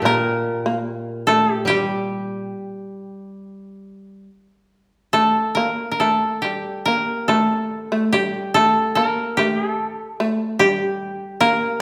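Bathed in a reverberant recital-hall ambience, this still, austere excerpt of Japanese chamber music sets an up-front, woody koto melody played with fingerpicks over a bright, buzzing, plectrum-plucked shamisen second line, while a quieter, dry koto accompaniment sounds beneath them only until 4.2 seconds, all moving in a free rubato flow.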